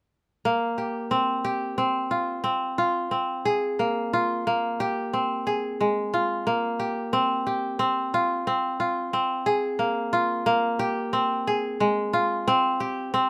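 A bright, crisp kora plays alone and up front in this short excerpt from a longer contemporary instrumental piece, its fingerpicked strings ringing across a playful, restless line at 180 BPM in 9/8. The harmony cycles through C5, F5, Bb5 and Abmaj7, and close, detailed microphones with light reverb capture the instrument from 0.5 to 13.3 seconds.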